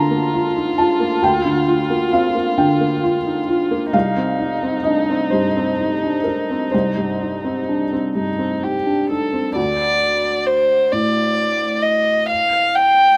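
A veiled, dark muted violin carries the melody up front, its single bowed line shaded with vibrato and portamento, in this longing, melancholic neoclassical passage cut from a longer piece. A mellow felt-muted upright piano accompanies close by, boxy and intimate, its action noise audible, as the harmony moves from Gm7/D to Cmadd9 in a rubato 6/8 under light reverb. At 9.6 seconds the music turns to a new section, settling on a bare D5.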